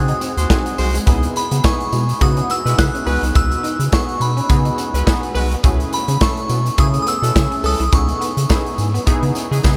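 Early-eighties boogie funk at 105 BPM in C# minor, danceable and slick, cut from a longer piece, where a glassy FM synth bell carries the melody with chorus and analog delay over a funky, nasal sawtooth polysynth comp, a rubbery, hollow square bass up front, a punchy acoustic drum kit, a jingly tambourine kept very quiet, a twangy electric guitar riff at the edge of break-up and a warm horn section playing a second line from 0.4 seconds, with chords moving from C#m9 to Emaj9 and a rootless F#m9/C# in a dreamy mix soaked in huge ambient reverb.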